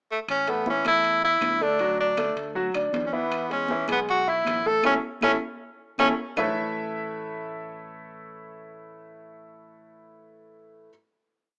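A brisk straight salsa groove in 4/4 opens with a short pickup before claves tap out a woody two-bar time line and congas, high-tuned and ringing with slaps and open strokes, sit in the background beside very quiet metal-shell timbales playing shell pattern and bell, all three dropping out around 6.5 s after a drum fill and band accent. Up front, a clear tenor saxophone with light vibrato and plate reverb carries a sunny, festive motif-based melody in sentence phrases, while a grand piano, intimate with audible action noise and long sustain, plays a montuno in octaves. A round, punchy fingered electric bass lays down a tumbao that anticipates the chords, staying with the piano through the final Aadd9 to 10.9 s in a rough home demo mix with small-speaker sound and a wet small-room ambience.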